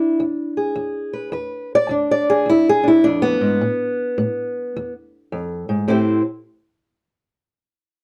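A loping swing on the eighth notes drives this short cut from an acoustic country blues in 4/4, its feel soulful and mournful. The only voice is a fingerpicked steel-string acoustic guitar with ladder bracing and old strings, heard up front from the start until 6.2 seconds. Its woody, boxy tone ranges from low E2 to D5. The harmony sits on E7, sheds its chord at 3.6 seconds, returns on E, and then turns to Am7 at 5.9 seconds as a new section begins. A moderate studio reverb gives the guitar a little room, and the production is dark overall.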